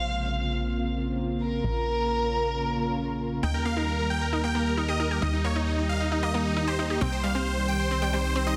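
A straight 4/4 trance pulse drives this short, emotional and bittersweet clip cut from a longer piece, anchored from start to finish by a punchy, funky analog bass with a fast-attack filter pluck and a ring-modulated, wave-folded edge. For the first 3.3 seconds a dark, woody chamber violin section sits up front as the second line, its bowed vibrato roughened by vintage 12-bit sampler grit and trailed by delay over a Bbmadd9 chord. At 3.4 seconds the harmony moves to Eb and huge, detuned supersaw chords take the melody, bright and full-bodied with tape echo. Alongside them a lush unison pluck spins arpeggios in a lower register, its decaying tones thrown into dub echo, before the chords settle on Cm. A moderate digital hall reverb gives the parts space, while the dense, heavily limited modern master keeps the sound tight and compact.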